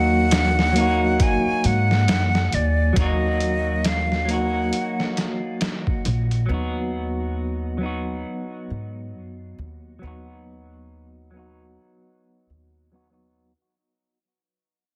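A breathy jazz flute leads this dark, hypnotic trip hop fragment, its crisp, chiffy attack and vibrato roughened by old-sampler grit and trailed by dub echo before it drops away at 5.2 seconds. Beneath it, a clean picked electric guitar shimmers with harmonic tremolo, its tone dulled by a low-pass filter and swept by a filter across the whole passage. A woody pizzicato upright bass sits up front, a touch louder than the guitar and flute, carrying the low end from start to finish. A pitched-down, muffled sampler-style kit of thumpy kick, medium-tuned snare and hi-hat swings lazily on the sixteenths until it stops at 6.5 seconds, where the harmony shifts from Ebm to B/D#. The sound is dry and squeezed into a heavily compressed, radio-like band, and the whole cut fades out as it goes.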